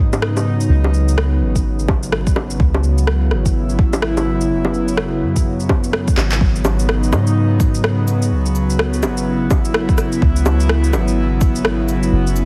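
Heavily compressed, radio-like sound with vinyl crackle and a lush hall reverb frames this ghostly, nocturnal future garage piece at 126 BPM with a swung 16th-note feel, where an airy, breathy, detuned pad with chorus holds sustained G#m7, E69 and F#5 chords over a soft, round 808-style bass, both pumping under sidechain, while overdriven electronic bongos, shaker, rim click, handclaps and cabasa tick along, a deep, overdriven electronic kick enters up front at 1.6 s, and a drum fill at 6.2 s leads into the second section.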